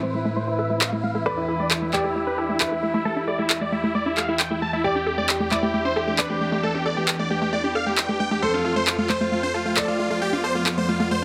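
Soaring and euphoric, this uplifting trance excerpt at 134 BPM sets a huge, detuned supersaw lead carrying the melody through a filter sweep and tape echo over a dark, mellow baby grand piano line with dub echo, a silky analog string pad holding sustained chords under ensemble chorus, bright wave-folded pluck arpeggios with their own filter sweep and digital delay, and layered electronic handclaps up front from 0.8 to 10.8 seconds, all moving through Am, Em7, Cadd9/E and F in a light digital ambience with a heavily compressed radio sound.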